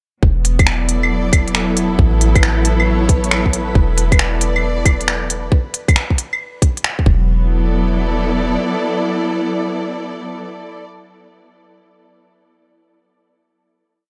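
A rich, lush symphonic string section leads, holding slowly shifting bowed chords with vibrato and a smooth top from 0.2 s, pumping against the sidechain and carrying on into a final chord until 10.9 s. This is a short, wistful and ghostly future garage piece at 136 BPM in 4/4, with a 66% swing on the sixteenths giving it a shuffled lilt. Underneath, a soft, round 808-style bass sits deep and dark, its sine tone sustaining roots with a fast attack and decay, also pumping with the sidechain, while a tight, muffled two-step electronic kick drives the groove up front. An organic electronic kit adds a skittering shuffled beat of crisp closed hi-hats, claves and finger snaps, with a tape-warm character and the sound of being re-recorded in a large room. In the background, a reversed, detuned granular texture swells on a held high note from 1.5 to 5.5 s, bright and dreamy with its own reverb. 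The overall sound is dry and gritty, like a hardware recording, keeping the parts close and present.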